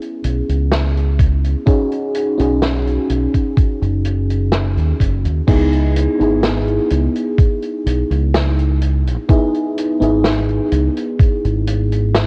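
A mellow FM electric piano opens this nostalgic, woozy vaporwave excerpt, its soft, full-bodied tone sitting up front in a lush chorus and analog delay, alongside a vintage drum kit of crash cymbal, hi-hat and snare with a rolled-off top and a gritty 12-bit sampler edge. A deep dub fingered electric bass arrives at 0.2 seconds, dark, round and punchy, holding a low register up front beneath the keys. At 1.2 seconds a thumpy, sampler-style electronic kick drum joins, carrying the same 12-bit grit and sitting at the front of the mix. The harmony drifts from E6 to B6 before settling on C#m7 as a new section begins at 5.5 seconds, with the slow, straight groove unhurried throughout. Light reverb and studio ambience surround the parts, while worn, warbling cassette tape with pitch drift and a dulled top end gives the whole piece its hazy, faded character.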